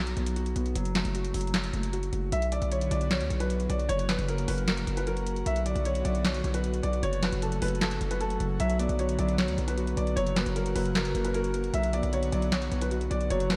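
Brooding and dark, this half-time trap excerpt opens with a deep, natural concert grand piano over a heavy, saturated 808-style bass and a booming analog drum machine with crisp snare, handclaps and metallic hi-hats carrying vintage sampler grit; at 2.3 seconds a worn, boxy grand piano melody with delay and audible action noise enters alongside an airy, breathy pad with chorus, the concert grand returns at 8.6 seconds, and a lush hall reverb gives the mix a dreamy feel.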